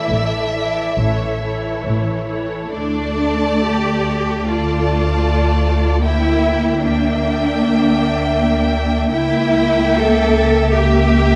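Violins and violas open together, with the upper violins carrying a soft-edged, vibrato-rich melody high above a focused second violin line and a distant, expressive viola accompaniment. This is a slow, elegiac movement for string orchestra in D minor, moving freely in 4/4 with rubato at roughly 62-82 BPM, and it is heard as a fragment of a longer piece. At 0.1 seconds the low strings join: a smooth, even cello section sits close, while the double basses sound clear and up front despite their distance in the hall. The harmony moves from a suspended Asus4 into D minor at 2.7 seconds, then darkens through Em7b5 over a D bass and settles on a tense C#dim7 at 9.1 seconds. Bowed and lush, the ensemble sits in a moderate concert hall reverb, and the production is dark and warm throughout.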